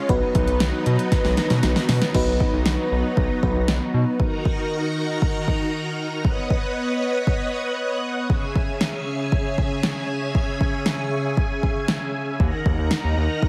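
Synth-pop in a bright, upbeat mood, this excerpt opens with a dreamy FM electric piano, softened by a pad layer through chorus and phaser, alongside shimmering vintage string-machine violins that hold sustained chords throughout, while a round analog bass and a deep house drum kit with a deep kick, fat snare and tape-warm character drive ahead, a drum fill running from 1.1 to 2.1 seconds, the piano stopping at 4.2 seconds and the bass returning briefly at 12.4 seconds, all set in moderate spring reverb with a heavily compressed radio sound.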